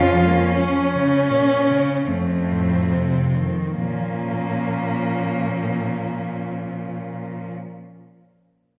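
Classical and lyrical, this short excerpt for four cellos moves in a slow, rubato 3/4 around 34-47 BPM in Bb minor, elegiac and yearning, easing and slowing over its first 3.8 seconds as the harmony passes from Bb minor over F to F7 before settling on Bb minor. An up-front, intimate cello carries the melody with light vibrato, a soft attack and an airy sul tasto bow, while a rich, smooth second line sits in the background and a close, even accompaniment cello fills out the texture. Beneath them the bass cello sings with portamento and expressive vibrato, all four playing through the 7.5 seconds in a dark production bathed in recital hall reverb.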